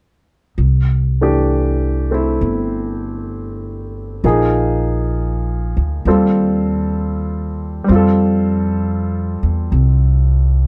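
Jazz ballad with a romantic, tender mood and a gentle swung feel, heard as a short passage cut from a longer piece. A woody, thumpy upright bass on gut strings plays pizzicato up front from 0.6 seconds, and a clear concert grand piano with a smooth, vintage character and deep low end joins as accompaniment at 1.2 seconds, moving through Cadd9, Bb5, Ebadd9 and F. Light reverb and a dark production give the sound an intimate, late-night glow.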